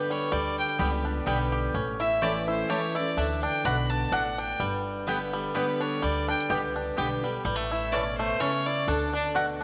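A lilting three-beat swing carries this joyful, rustic bluegrass passage, lifted from a longer piece. A clear, smooth fiddle sits up front with the melody, its bowing even and touched with light vibrato. Beside it, a twangy, percussive banjo played with fingerpicks plays arpeggios, while a picked dreadnought acoustic guitar gives warm accompaniment with the odd finger squeak. The upright bass enters at 0.3 seconds with dark pizzicato notes, and the mandolin joins at 0.8 seconds, adding woody double-string stabs from the background. The harmony moves among G, A and D, and a moderate plate reverb gives the ensemble a sense of space.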